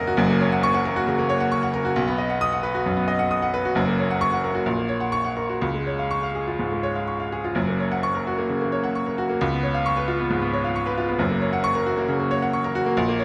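Rubato phrasing pulls freely against a steady four-beat metre in this sparkling, brilliant classical piano study, a short passage cut from a longer work in which a bright baby grand plays solo across a broad range from the deep bass to the high treble. The instrument sits up front with an intimate, natural tone, and the clatter of its action is audible beneath the notes, all carried in the moderate bloom of a recital hall. Around 7.6 seconds the music moves into a new phrase, still circling a handful of simple chords before settling home at 11.2 seconds.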